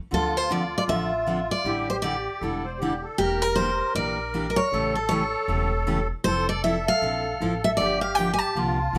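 From the first moment at 0.1 s, a fiery, virtuosic jazz manouche excerpt swings in D minor at 156 BPM, with a bright, up-front picked dreadnought guitar carrying the melody, a reedy, shimmering musette accordion adding a second line, a full-bodied picked jumbo guitar accompanying through chords such as Dm7, Em7b5 and Fmaj7, and a woody, thumpy pizzicato upright bass on gut strings underneath, all set in a light reverb.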